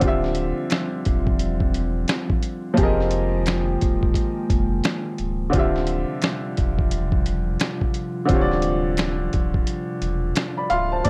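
Lightly reverberant and hazy, this melancholic lo-fi hip hop excerpt sets a woody, up-front upright piano colored by cassette tape and plate reverb over a dark, detuned analog pad with chorus, a round sine sub bass and a gritty, compressed sampler-style drum kit with a thumpy kick and fat snare, while very quiet finger snaps enter at 0.7 s and the groove drops into a break at 9.7 s.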